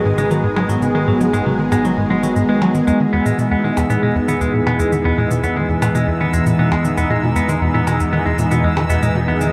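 A swirling, detuned analog pad with phaser and chorus opens this mysterious, expansive piece of sequencer-driven space music at 117 BPM, sitting up front over a nasal, mellow analog drone, a clean, twangy electric guitar playing picked arpeggios through tape echo, and a resonant, bubbling stepped-filter texture in the background, joined at 0.1 seconds by a tight, punchy, wave-folded sequencer bass riff with ensemble chorus and tape echo and at 0.2 seconds by tape-warm cabasa and electronic percussion blips, as the harmony moves from G#m7 to Emaj7 at 2.9 seconds inside a vast, echoing space.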